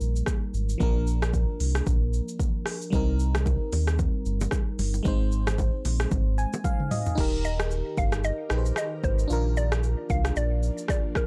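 A deep, full sine sub bass with an octave sits up front in this breezy, joyful afrobeats excerpt in Eb major at 113 BPM, with a swung 16th feel, beside an electronic afro-pop kit of deep kick, crisp hats, rim click, shaker, toms and crash, which has a tape-warm, gritty 12-bit sampler texture and ends in a fill. A glassy, bell-like FM electric piano with chorus carries the chords and adds its own fill, while close, dry hand-played congas and bongos sit in the background from 2.9 s. A woody, round mallet-like synth pluck takes the melody at 7.4 s, and a faint, ethereal, airy detuned pad with ensemble chorus, reverb and sidechain pumping rises in at 7.9 s, all in a dry, gritty hardware-recorded mix.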